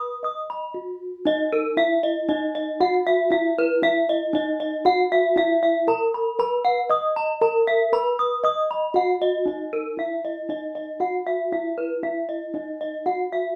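Gamelan music with a shimmering, brilliant mood, heard here as a short portion cut from a longer piece in a straight four-beat metre. Two bronze metallophones play together from the very start, their paired tuning producing shimmering beats that give the whole texture its glowing pulse. One carries the melody in a middle register, struck with a wooden mallet, its tone metallic, full and close, sitting dry and up front. The other spins arpeggios higher above it with a horn mallet, ringing out bright and airy with a clear bronze edge. The players sound as if gathered live in one room, wrapped in a short studio reverb, and the opening section repeats once before the recording breaks off around 13.6 seconds.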